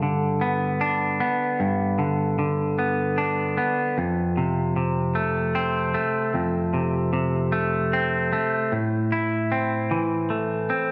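A clean, compressed semi-hollow electric guitar plays alone and up front, its picked tone carrying slapback echo and digital delay through a lush hall reverb. This melancholic yet cathartic rock fragment in A minor moves in a slow 6/8 at 51 BPM, with the guitar ranging from F2 to E4 over chords that shift from G to F at 4.0 seconds. It settles on A minor at 8.7 seconds, with a big arena sound layered over small room ambience.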